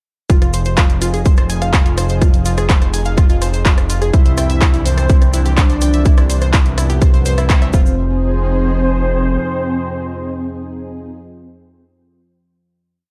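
A punchy, overdriven four-on-the-floor kick sits up front in this dramatic, hypnotic melodic techno piece at 125 BPM, joined by a fat, detuned sawtooth bass, a round wave-folded pluck arpeggio on a 12-step loop drifting against the bar, a lush chorused pad, a very quiet evolving drone, programmed claps, hats and rim clicks, and a grainy hand-played cabasa, with a bold detuned unison lead riff and an airy supersaw doubling it an octave higher entering at 4.1 seconds over a dark production, the drop giving way to a final hit at 8.0 seconds.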